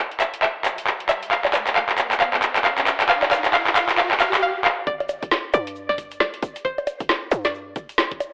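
Soulful and late-night, this UK garage excerpt moves in a two-step groove at 135 BPM in 4/4, with a 60% swing on the sixteenths. A layered electronic garage kit sits up front from the start, its woody snare, metallic hats, handclaps and bongos driving a build-up with a drum fill. A very quiet, grainy egg shaker stays close, and an electronic riser hovers in the background until 4.4 s. A twangy, string-like resonator pluck carries the melody between C5 and F5, its bright sawtooth tone carrying a noise layer, a filter sweep, chorus and a fast, decaying attack. After a brief break, the drop lands at 4.9 s on a Dsus4 chord, bringing a punchy, tight sine 808-style bass from F1 to G2 up front and a knocking electronic kick, re-recorded in a small room, tucked behind it. The mix pairs a moderate plate reverb and digital ambience with a dry, gritty hardware sound that has a telephone-like edge.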